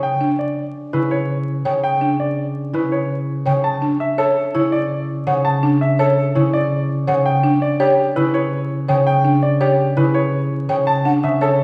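Hypnotic and propulsive, this short cut from a longer piece is minimalist pattern music in the classical vein, moving at 166 BPM in a straight 5/4. A clear, present baby grand piano carries the melody up front between G4 and A5, while a ringing, fingerpicked concert harp holds down a low C#3 accompaniment close by. A buzzing marimba with medium mallets on hardwood bars spins woody, dry arpeggios between D4 and C#5. From 1.7 s a mellow, hollow concert flute with a soft attack and vibrato adds its own arpeggios high in the background, ranging between F#5 and G5 before dropping out at 11.1 s. The harmony rocks between a rootless G5 and a Dmaj7 with its third omitted, and the whole ensemble sits back in a wet recital hall with a touch of vinyl crackle.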